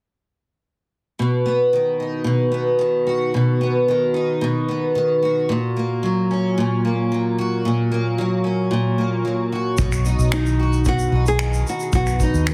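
A double-tracked, picked steel-string acoustic guitar with a warm fresh-string parlour tone opens this carefree acoustic pop excerpt at 1.2 seconds, playing up front in B major at 112 BPM in a straight 4/4. It carries the easy-going accompaniment alone, moving from B to F#/A# and back to B. At 9.8 seconds a dark, round, foam-muted vintage electric bass arrives, amped and up front, together with a small-room unplugged drum kit of finger snaps, shaker and a punchy kick played with bundle sticks. Just after, at 10.3 seconds, a small, fingerpicked nylon-string guitar adds a short melody with audible finger squeak, set in a digital delay. The whole sits in a moderate studio reverb and has a heavily compressed, radio-ready sound.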